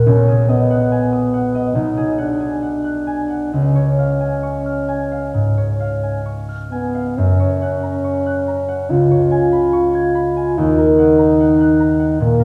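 A resonant recital hall wraps this short classical passage in a wet, lingering reverb, as if heard in a church or concert hall. It is a serene, lyrical romantic duo in 4/4, moving with a flexible rubato and cut from a longer piece. The concert harp sets down the accompaniment from the first moment, its thumb-plucked strings ringing across a broad span from B1 to G#6 with an acoustic, warm tone placed up front. A mellow French horn carries the solo melody from 0.1 seconds, singing in a compact middle register in a classical style, equally close to the listener. Harmonies drift through G#m7/B and C# toward F#, C#7 and a closing D#m at 10.6 seconds, giving the phrase a gently searching, tender colour.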